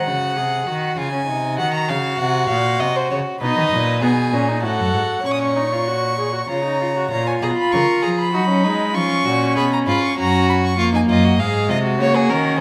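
In a straight 3/4, this serious, solemn baroque-style fugue for string quartet, cut from a longer piece, opens with a single violin carrying the melody up front with light vibrato, while a second violin adds a reedy, close second line and a rich cello anchors the bass, also up front. A warm viola joins the accompaniment at 3.4 s, and every player bows with gut-string tone in period style. A moderate recital-hall reverb gives the quartet a resonant, dignified space as the music moves into a new section at 7.1 s.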